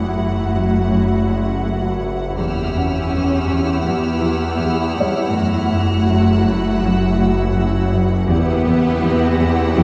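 A dark production in a moderate concert-hall reverb frames this uneasy, mysterious cinematic fragment, cut from a longer piece, as a clear violin section holds a single high melody note over a smooth viola section, an expressive cello section with portamento and a bright, distant double bass section, all bowed with vibrato. Beneath the strings, a resonant sawtooth-and-sine drone with moving overtones, chorus and phaser sustains low, while a second, lush cello section plays a background riff from 0.2 s. A high violin texture, set back in the mix, joins at 2.4 s, and a very quiet felt-muted upright piano adds soft, mellow touches from 2.8 s as the harmony shifts between F#m7 and Emadd9.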